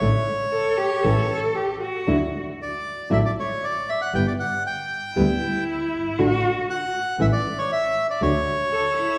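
Passionate and playful, this short cut from a longer rubato tango in D major moves at about 117 BPM, with a reedy, up-front bandoneon carrying the melody over thumb-plucked classical nylon-string guitar and an earthy bowed double bass with light vibrato. From 0.5 s a bowed cello joins as an expressive second line, sliding between notes with portamento and vibrato. The whole ensemble sits in the long, wet reverb of a church or concert hall, passing through chords from Asus4 and Dadd9 to G5 before settling on D5.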